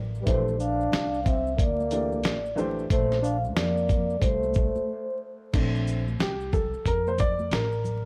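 This jazz-hop cut of hip hop moves at 91 BPM in 4/4, with a 16th-note swing and a smooth, cool mood centered on Bb lydian over a Bbmaj9 chord. A dusty, sampler-style drum kit sits up front with a thumpy kick, fat snare, hi-hat, shaker and crash, sounding compressed, gritty and tape-warm, as if re-recorded in a small room. A woody pizzicato upright bass on gut strings carries the low end with tube saturation, while very quiet, bright maracas and congas sit close behind. Soft-malleted vibraphone, ringing and metallic with a slow motor vibrato, leads the melody alongside a close-miked jazz trombone with light vibrato and scooped notes, both treated with tape echo until a break at 4.9 seconds. From 5.5 seconds the dark, mellow upright piano, which has been comping throughout, takes a vintage-toned solo to the close of this fragment from a longer piece. The mix is dry and hardware-gritty, dusted with vinyl crackle.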